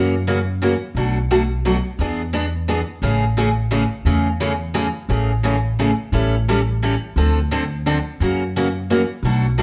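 A swung triple metre at 174 BPM, with the eighth notes leaning at 62 percent, drives this short, playful cut from a longer piece of acoustic string swing in the jazz manouche style, set in A major and tuned to A4 = 444 Hz. A picked steel-string dreadnought guitar carries the accompaniment from 0.0 to 9.6 seconds, its fresh strings giving a bright, up-front sound between B2 and A4. Beneath it, a pizzicato upright bass with gut strings plays across the same span, woody, warm and thumpy in its low register from A1 to F#2. The harmony moves from F#7 through Bm7 and E7 to Amaj7, then the phrase comes around again at 5.1 seconds, turning through A7 and Dm7 before landing back on F#7. A wet studio reverb with a 0.7-second decay places the pair further back in the room, lending the playful, swinging performance a sense of space.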